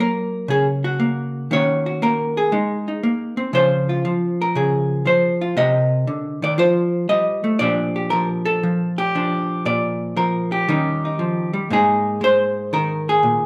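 A relaxed swing at 118 BPM in 4/4, with the eighth notes lilting at a 68% swing, carries this short stretch of solo jazz lifted from a longer piece. A lone hollow-body electric jazz guitar plays throughout, its tone dark and clean, picked, and placed up front, ranging from Ab2 to Eb5. The harmony moves through sophisticated changes, from Gb through Ebm7, Abadd9 and Dbmaj7, then on to Cm7, F9, Bb6 and Eb7. At 11.7 seconds the passage shifts into a new section, returning to Abadd9 until it breaks off at 13.5 seconds. A wet club reverb surrounds the guitar, which sounds as if heard from further back in the room, giving the recording a sophisticated, relaxed atmosphere.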